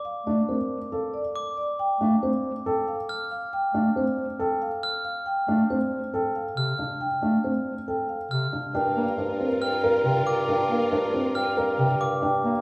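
Minimalist classical pattern music at 138 BPM, meditative and hypnotic, in which a round soft-mallet marimba melody, a warm bass clarinet accompaniment, dark piano arpeggios with audible action noise, and sparkling hard-mallet glockenspiel arpeggios entering at 1.4 s circle over Bbmaj9 and Dm7 harmonies before the music settles into G minor at 8.7 s, where a lush violin section, a distant mellow bassoon bass and a very quiet French horn line with light vibrato join, heard from further back in a reverberant recital hall.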